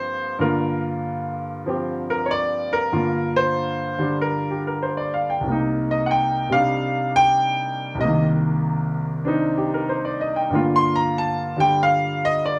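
Set in a small room with light reverb, this cool, swinging solo jazz passage, cut from a longer piece, features a clear, open, up-front concert grand piano with deep bass, moving from Gm7 to Cm7 at 5.5 seconds and back to Gm7 at 10.5 seconds over a swung eighth-note feel.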